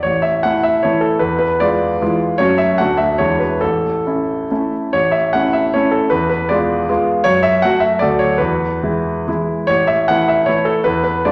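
Graceful and rustic, this brief classical passage is a romantic triple-time dance in A major, cut from a longer piece and played with dotted rhythms and a flexible rubato feel. The tempo drifts between 130 and 167 BPM in 3/4, giving the dance a lilting sway. A solo grand piano carries everything, its clear, smooth tone sitting up front with a slightly vintage character as its range spans deep bass notes to the middle-upper register. The harmony circles through E7b9, F#m, D and E7 before settling on A, and the phrase is then repeated from 4.9 seconds, passing through E before returning home. A wet recital hall reverb gives the instrument a gentle bloom and a sense of space around each chord.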